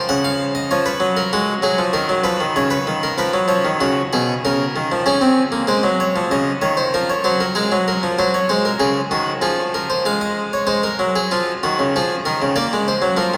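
A straight 4/4 pulse at 96 BPM drives this elegant, stately baroque-style two-part invention for solo harpsichord, its plucked, nasal Flemish tone sitting bright and up front across a range from B2 to F#5 while a cathedral reverb with a 5.2-second decay bathes it in a vast, echoing space, as harmonies such as F#/C#, G#m7 and C#7 give way to a new section at 10.0 seconds that lands on A#7 before the passage, cut from a longer piece, breaks off at 13.4 seconds.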